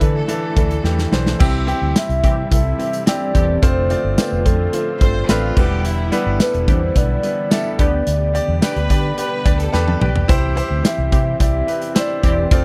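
This 1980s-style pop excerpt moves at 108 BPM in a straight 4/4, with a glossy, nostalgic mood and a dry, close sound. A modern studio drum kit sits up front with a punchy kick, a medium-tuned snare, dark cymbals, hi-hat, tambourine and toms, rolling through fills at 0.8 and 9.7 seconds. Beneath it, a foam-muted fingered electric bass gives a round, amped low end, while a clear, present baby grand piano and a mellow string machine cello pad with ensemble chorus, sitting in the background, fill out the harmony. At 2.0 seconds a hollow, woody synth lead with a clarinet-like tone carries the melody, warbling with vibrato, chorus and tape echo, joined almost at once by a funky sawtooth polysynth comp playing chorused stabs with a filter sweep. A distant, lush symphonic violin section adds a bowed second line with tape echo, heard briefly at the start and again from 5.0 seconds, as the chords move from Dsus2 through C, F6, Em7 and G/D before returning to C.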